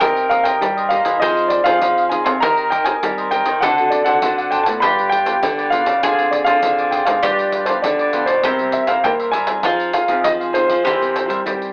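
Nostalgic and yearning, this samba-and-choro passage in C minor at 100 BPM, cut from a longer piece, puts a dark, mellow baby grand piano up front with the melody, while a bright, double-strung bowl-back mandolin picks a second line, a crisp cavaquinho and a full-bodied, fingerpicked nylon-string guitar in the background supply accompaniment (all three, like the piano, bathed in plate reverb), a second classical nylon-string guitar holds down the bass, and a jingly pandeiro played with hard hands keeps the percussion, all heard through a wet booth ambience and the lo-fi telephone tint of a home cassette recording as the harmony moves from Cm7 through G7b9 and Dm7b5 into a new section at 9.6 seconds.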